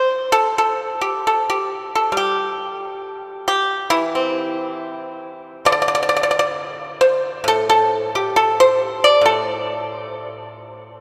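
A long, wet cathedral reverb surrounds this recording, which was captured in a church or concert hall, and its 5.5-second decay lets every note linger in the space. Within that resonant room, a lone acoustic pipa plays up front with a bright, percussive attack and a dry character to its tone, plucked with fingerpicks. This is Chinese traditional music in the A yu mode, moving in a free, rubato feel around 67 BPM in 4/4. The pipa carries the whole 11-second passage by itself, ranging from A2 up to D5. The mood is contemplative and elegant, and this short excerpt is cut from a longer piece.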